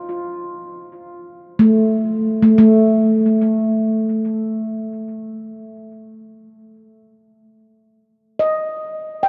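A ringing, mellow, vintage and band-limited handpan, played alone with soft fingertips and carrying a tape echo, sits up front in this serene ambient fragment at a slow 54 BPM in 4/4. It rests on an F chord across a span from A3 to G5 inside a drenched cathedral reverb with a 6.8-second tail, before fading out from 5.7 to 9.3 seconds.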